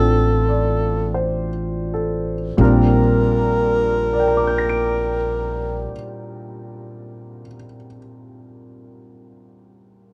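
Tender and late-night, this slow swung jazz ballad in Bb major at 40 BPM eases back over its first 2.6 seconds as a breathy, subtoned tenor saxophone with vibrato and scooped notes carries the solo melody over woody pizzicato upright bass and an intimate concert grand piano whose action noise is audible, the harmony settling from F7b9 onto Bb69 before saxophone and bass stop at 5.9 seconds and the piano rings on alone until 10.1 seconds, all captured in a dry, close 1970s-style studio sound.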